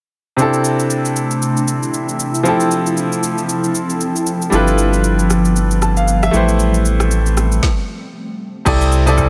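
Soulful amapiano with a swung sixteenth feel, featuring a brilliant, up-front concert grand piano over an ethereal, detuned pad with chorus, tremolo and sidechain pumping, an electronic afro-pop kit with a deep kick and woody snare, and a thick, saturated sub bass arriving at 4.5 seconds, before a stop at 7.6 seconds gives way to distant agogo bells and woodblock at 8.7 seconds in this excerpt from a longer piece.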